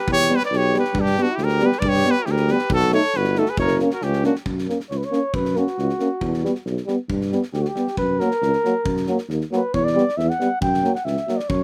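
Balkan brass band folk at 136 BPM in 2/4, restless and fiery in F# phrygian dominant, opens with an up-front, clear trumpet melody that stops at 4.4 seconds, handing the lead to a dark, close-miked flugelhorn solo from 4.5 seconds over a mellow tuba bass with light vibrato, smooth-topped French horn and vintage euphonium accompaniment, and a tight, gated 80s drum kit of kick and snare in a bright stone room, all with little reverb in this fragment of a longer piece.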